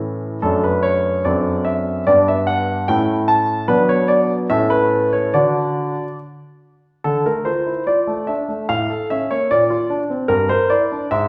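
In a straight 2/4 at 73 BPM, this short classical-period piano sonatina moves at an unhurried, graceful pace, cut from a longer piece. A solo concert grand carries the whole of it, clear and polished with a deep bass and long sustain, sitting present and up front across a range from F#2 to A5. The opening in D major has a cheerful air, passing through D/F#, G, A and Bm before settling back on D. At 7.1 s the music turns to D minor, touching A, Bb and Edim/G, which shades the brightness with a darker colour until the cut at 11.3 s. The piano is tuned slightly low, to A4 = 436 Hz, and a recital hall reverb with a 1.3-second tail surrounds it, giving a sense of listening from further back in the room.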